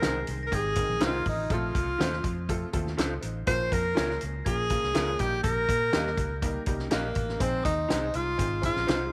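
Passionate and urgent, this 9-second cut from a longer 1960s-style uptempo soul piece moves at 122 BPM in a straight 4/4, led by an up-front, breathy tenor saxophone with vibrato, scooped notes and tape echo, played in a jazz-inflected solo style over chords moving from Ab through Bbm to Ab/Bb. Beneath it, a fat-snared, tight-kicked acoustic drum kit sits forward in a small room, a dark, round, foam-muted fingered bass punches out the low end, and a clear, woody, slightly detuned upright piano fills in the accompaniment. In the background, a lo-fi, slightly broken-up electric guitar adds picked stabs through spring reverb, while a bell-like, airy glockenspiel struck with soft plastic mallets rings out a high second line.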